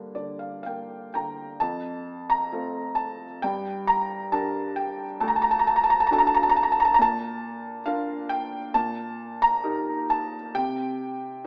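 Wistful and reflective, this short classical passage for solo piano is cut from a longer piece and unfolds in a free, rubato 4/4. A felt-muted upright piano plays by itself from 0.0 to 11.5 seconds, its tone soft, mellow and intimate, with a thin, vintage felt character placed up front. The opening 1.6 seconds form a brief piano fill before the lyrical main passage begins. The part spans D2 to Bb5, and the harmony moves through Gm, F, D, Bb and Eb/Bb before arriving at C5. A wet recital hall reverb surrounds the instrument, while the overall sound carries the character of a small speaker.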